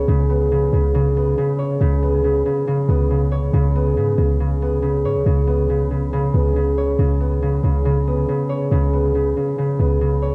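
Dark, menacing hip hop in a half-time trap feel, this short clip of a longer piece pairs a bright, thumb-plucked concert harp playing ringing arpeggios up front, colored by cassette tape and analog delay, with a deep, boomy 808-style bass that hits with a fast attack and decays into a mellow sine tone with a noise layer. Both parts play throughout as the chords change at 3.5 s and again at 7.0 s, where a new section begins. The sound carries a small-room ambience and the lo-fi grit of a home cassette recording with lossy compression artefacts.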